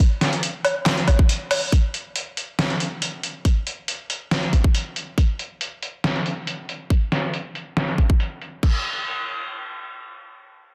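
A dense, heavily limited master with light reverb frames this cavernous, heavy dubstep cut, moving at 139 BPM in a half-time 4/4 feel. A tight, layered electronic kick drum sits up front, joined by a gritty, pitched-down sampler-style kit of medium-tuned snare, hi-hat, handclaps, woodblock and crash cymbal, low-pass filtered, compressed, tape-warm and re-recorded in a small room. The piece opens on a drop, then a filter sweep works across the drums from 1.7 to 8.6 seconds.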